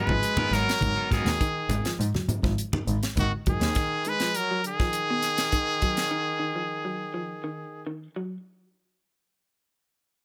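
A brilliant, up-front trumpet carries the melody of this hypnotic, defiant afrobeat passage from the first moment, its punchy, scooped notes shaded with vibrato, while a raspy, growling trombone plays a gritty second line beneath it. At the start, a barky, overdriven reed electric piano sits very quiet under the horns, and a twangy guitar at the edge of break-up adds picked stabs in the background, both dropping away by about 1.4 seconds. A second guitar through a small old amp, lo-fi and fingered, spins low arpeggios that run through nearly the whole cut. A tight funk kit, dry and polished with a high-tuned snare and tight kick, sits up front beside a bowed, bright double bass heard at a distance and low-tuned, thin-skinned congas further back in a live room. The congas fall away near 3.6 seconds with the bass just after, and the kit stops by 6.1 seconds, leaving the horns and the arpeggiated guitar over a single G#7 chord in a small room.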